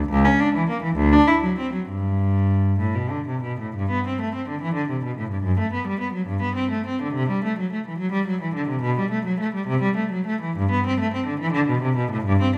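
Classical, baroque-style suite movement for unaccompanied cello, serene and dance-like, in G major and 6/8, played with rubato at roughly 61-74 BPM counted in dotted quarters. A single bowed cello, heard close and up front, carries the music alone with a rich, reedy gut-string tone in period style, ranging from C#2 to E4. A recital hall's reverb with a 1.3-second decay surrounds the playing, and the music moves into a new section at 3.7 seconds before this fragment of a longer work ends at 12.6 seconds.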